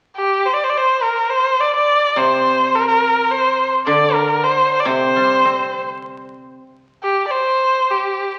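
A straight 4/4 pulse at 105 BPM carries this graceful, tender fragment of Chinese traditional chamber music, cut from a longer piece and tuned slightly high at A4 = 441 Hz. A single bowed erhu leads the melody from 0.2 s to the end at 8.4 s, sitting up front with a clear, focused and somewhat boxy tone, colored by vibrato and sliding portamento between G4 and D5. From 2.2 s to 6.6 s a guzheng adds quieter accompaniment in a lower register, its acoustic strings plucked with fingerpicks to give a mellow, ringing, silvery shimmer beneath the bowed line. The whole passage unfolds as one continuous section, set in the wet reverb of a recital hall. The sound carries the character of a very old 78 rpm record, with vinyl crackle running beneath the music.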